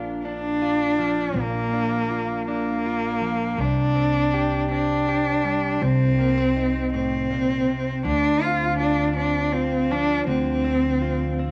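A focused, boxy bowed cello carries the melody up front with vibrato, entering at 0.3 s through cassette tape colour and analog delay, over woody pizzicato upright bass with transformer saturation and a clean, picked, compressed electric guitar with subtle chorus, in a melancholic, reflective acoustic folk-pop ballad fragment at 54 BPM in a straight 6/8 that moves from Bb through Cm to Dm7, set in the light reverb of a small room on a home cassette recording.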